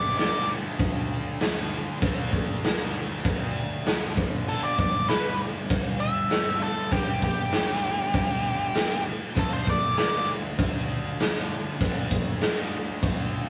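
A rough rehearsal-room recording with a moderate small-room reverb gives this short, raw and rowdy garage rock cut its cramped, gritty character. A thick, double-tracked fuzz guitar carries the riff in the low register from start to finish, its bright, distorted tone filling the space under the other parts. The raw garage drum kit sits up front with a boomy kick, a medium-tuned snare and crash cymbal, its saturated, mid-forward sound taking on a stony room quality with a rolled-off top. An octave-fuzz lead guitar, dark and picked, flashes briefly at the very start, then returns at 4.5 seconds to play the melody until 10.3 seconds. The harmony moves from D5 to G5 and back to D5, keeping the straight 4/4 groove blunt as the piece is cut off from a longer performance.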